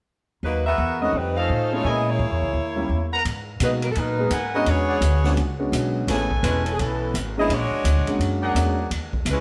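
An up-front saxophone section carries the melody with vibrato in this swinging, dramatic big band jazz excerpt, joined from the start by a woody, growly pizzicato upright bass, with stabs from a trumpet section with light vibrato arriving moments later. A grand piano with audible action noise and long sustain adds intimate accompaniment over extended jazz chords, and a distant, roomy drum kit with dark cymbals and a boomy kick enters at 3.3 seconds. The band is heard from further back in the room, set in a moderate echo chamber reverb.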